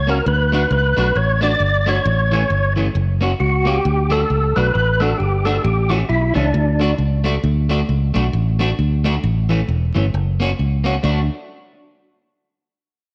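Ska in D major at 134 BPM with a swung, bouncy and joyful feel, cut from a longer piece, where a fat, key-clicking tonewheel organ with third-harmonic percussion, light overdrive, chorus vibrato and fast rotary speaker carries the melody up front until 6.9 seconds, over a dark, round, foam-muted fingered bass and a twangy, slightly broken-up picked guitar with lush chorus, all set in a moderate echo chamber reverb as the chords move through D, A and F#.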